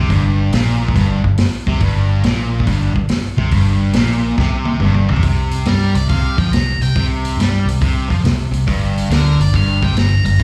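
Heard through a club PA with the room's reverb around it, this brooding, smoky swung fragment of blues rock power trio and southern rock sets a bright, double-tracked fuzz guitar riff with slapback echo over a round, foam-muted fingered bass and an up-front vintage kit with a high-tuned snare, tight kick and rolled-off top, whose fill at 4.4 s closes the first section before a dark octave-fuzz lead guitar melody enters at 5.7 s.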